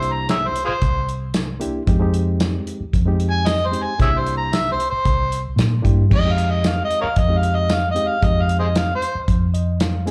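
Smoky and soulful, this straight-eighth soul blues clip, heard live through a club PA, puts a gritty, overdriven harmonica up front with light vibrato and tongue slaps, taking a jazz-style solo from 6.1 s over a reedy, bright electric piano, a round, foam-muted electric bass and a dark, tight-kicked soul drum kit with tambourine, before the electric piano slips in a fill at 9.3 s.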